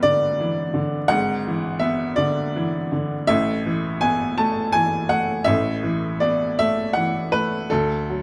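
A woody, boxy upright piano carries this brief fragment alone, sitting up front with a short sustain that keeps each note close and intimate. The style is neoclassical minimalist piano, peaceful and tender in mood, moving slowly at about 55 beats per minute in 6/8 with a rubato feel. The harmony moves from E7/G# at the start to Asus2 at 3.3 seconds, then reaches D at 7.7 seconds. The piano's range spans from a deep G#1 up to A5. Light reverb lends a gentle sense of space around the instrument over the short 8.2-second passage, which is cut from a longer piece.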